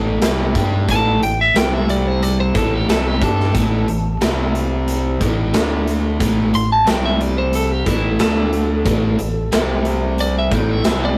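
A rough rehearsal-room recording with light reverb and warm saturation carries this gritty, brooding blues rock and southern rock power-trio cut in A minor at 90 BPM, where a crunchy, double-tracked rhythm guitar riff and a punchy, amped fingered bass drive over a big, natural-sounding acoustic kit with a punchy kick and medium-tuned snare, while a slightly broken-up, compressed lead guitar melody enters at 0.9 seconds and rides the Am, C5, A5 and D5 changes.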